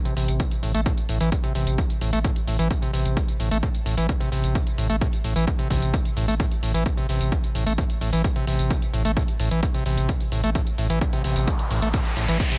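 Driving peak-time techno with an industrial, intense mood, built on a squelchy, gritty overdriven acid bass riff that sits up front with distortion, sidechain pumping and tape echo, over a deep, thick saturated sub bass, a punchy layered electronic kick drum re-recorded in a small room, tape-warm electronic hi-hat and tambourine, and a riser entering at 11.1 seconds, all cut from a longer piece and set in digital ambience.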